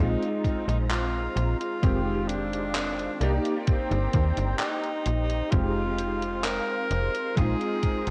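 A slow, straight 4/4 pulse at 65 BPM, with a thumpy, up-front electronic kick entering at 0.4 s and gated 80s drum-machine handclaps and hi-hat at 0.2 s, carries this hazy, woozy vaporwave excerpt in F dorian, where a snappy, metallic FM bass and a vintage electric grand piano with a clangy low end and ensemble chorus circle Bb9sus4, Fm7 and Cm7 beneath a thick, detuned unison pad washed in chorus and phaser, while a breathy, whispered tenor saxophone with light vibrato and tape echo sings an intimate solo melody, all under light reverb on a cassette-tape sound.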